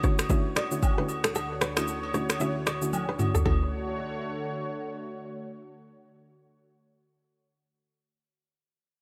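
Joyful and sunny, this brief cut from a longer afrobeats piece at 114 BPM in D major, with a 16th-note swing, opens on a Dmaj7 chord, with a soft, round, detuned pluck and a lush sawtooth unison pad under chorus carrying the harmony while a crisp, fingerpicked kora riff rings through digital delay in the background, an up-front, overdriven electronic drum kit with a deep kick, snaps, rim clicks, shaker and toms drives until a fill from 2.9 to 3.5 seconds, and distant agogo bells and woodblock add a light percussive layer before the drums, kora and percussion drop out between 3.6 and 3.7 seconds, leaving the pluck and pad in a small, lightly reverberant room.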